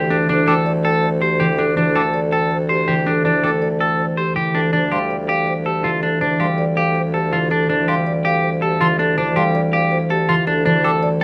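A straight 4/4 pulse at 162 BPM drives this hypnotic, urgent stretch of minimalist classical pattern music in D minor: a bright, picked clean electric guitar up front and an airy concert flute with vibrato in the background spin arpeggios, a fingerpicked concert harp rings out the accompaniment, a clear bassoon supplies the bass on a low D beneath, and a mellow, round marimba with soft mallets carries the melody from 0.1 seconds, the ensemble sitting in a moderate large studio reverb as the harmony moves from Cadd9/D to Dm9 at 4.5 seconds and back to Cadd9/D at 10.5 seconds.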